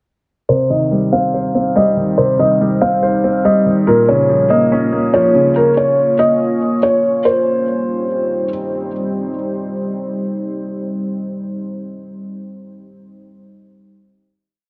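This whole hip hop piece leans into trap at 142 BPM in 4/4 with a half-time feel, sitting in C phrygian with an eerie, hard-hitting mood. From 0.5 seconds a felt-muted upright piano carries a looping melody up front, its thick felt giving a soft, intimate tone with audible action noise, shaped by a low-pass filter and delay. Beneath it a dark, vintage-sounding grand piano plays a rising and falling arpeggio in eighths, also repeated like a sampled loop and softened by a low-pass filter. A deep, moody ambient pad of detuned sawtooth and sine with a sub octave enters at 1.6 seconds, its slow attack and long release holding sustained chords through chorus and its own reverb. A filter sweep runs across the opening breakdown as the harmony moves from Cm to Bbm and back, arriving on a final Cm chord at 7.3 seconds while the pad rings on. A lush hall reverb with small room ambience frames the recording.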